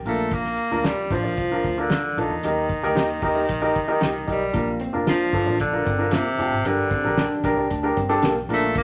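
A straight 4/4 groove at 114 BPM drives this uptempo 1960s-style soul clip, with a driving, urgent mood over a Bb, Eb, Bb, Gm progression. A cloth-damped, thuddy drum kit lays down hi-hat, a tight kick and a fat snare, its sound dry with a rolled-off top, while a vintage muted picked bass sits underneath with a round, foam-muted tone. An upright piano, woody, polished and up front, carries the accompaniment, and a tenor saxophone leads the melody in a jazz style with light vibrato and a vintage, warm character. A mellow, clean, fingered electric guitar adds very quiet, compressed stabs from 0.8 s. At 4.8 s a second guitar through a small old amp joins with a slightly broken-up, lo-fi riff tucked into the background. A moderate large studio reverb gives the whole band a sense of space.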